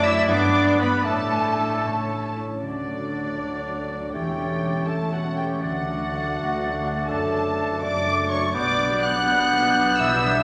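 Classical orchestral music in 6/8, restless and dramatic, in which a lush, expressive studio violin section carries the melody over ringing harp arpeggios, a mellow bassoon, a clear viola section, and very quiet, distant horn chords. Background lines from a mellow oboe, a pure silver flute, a warm clarinet and a second, very quiet symphonic violin section surround the tune, while rich cello and double bass sections hold the bass. At 2.6 seconds a soft-edged, mellow trumpet section adds stabs, and a wet scoring-stage reverb gives the whole ensemble a spacious glow.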